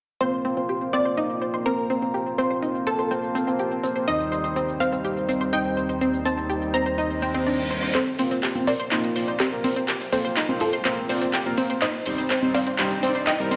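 Bathed in a moderate recital-hall reverb, this expansive, driving progressive house excerpt at 124 BPM sets a lush, punchy unison pluck melody with tape echo over round analog pluck arpeggios, smooth supersaw stabs, a pure FM synth bell second line that ends at 7.9 seconds, and an overdriven deep house kit with metallic hats up front. A very quiet reverse cymbal and riser at 7.3 seconds then leads into a build-up with a drum fill, where the supersaw stabs take a filter sweep and a dark, small-room vintage kit of ride and snare joins. Overdriven congas sit in the background from 8.6 seconds over chords moving from Fsus4 to Cm.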